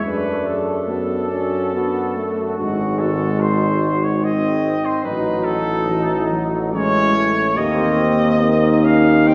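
A mellow solo cornet sings an elegiac, solemn hymn-like melody in rubato 3/4 at 71 BPM, with vibrato and soft attacks, over a present solo tuba bass, a warm solo trombone and a tight, close-miked French horn section in the background, while a distant trombone section joins at 0.1 seconds, the brass band heard from further back in a reverberant concert hall in this short classical passage.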